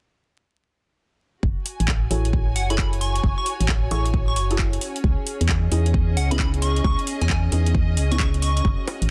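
A hollow, organ-like FM bass sits up front in this moody, skippy two-step UK garage excerpt, its fast-attack notes decaying darkly between F#1 and E2 from 1.4 seconds onward. At 133 BPM in F# dorian with a 64% swing on the 16th notes, a punchy layered kick drives the groove while a house kit adds bongos, handclaps and metallic hi-hats from 1.7 seconds. Beneath them, a dark symphonic string section holds a woody, bowed ensemble texture with vibrato and a smooth top, pumping against the sidechain. Soft, detuned chord stabs carry chorus and delay over the F#m9 to C#m9 change, and a catchy, bright unison lead enters at 2.6 seconds, its square-wave tone shaped by a filter sweep and echoed by delay. The mix is dry, dense and heavily limited, with vinyl crackle running beneath it.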